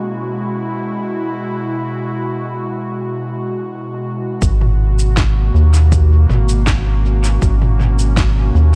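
A round analog bass with tube saturation sits up front in this deep, meditative ambient dub fragment, entering at 4.4 seconds with a dark, plucked tone. Before it arrives, an airy, breathy pad holds sustained chords alone, its detuned, slightly nasal character softened by chorus and a long release. At 4.4 seconds an electronic kick drum joins the bass, layered and overdriven for a heavy low punch. Alongside it, an organic electronic drum kit adds shaker, a woody snare and toms, all muffled by low-pass filtering and thrown into dub echo. The mix is dry of reverb but echo-heavy, giving the meditative groove its hypnotic space as the chords move from F#9sus4 to G#m11.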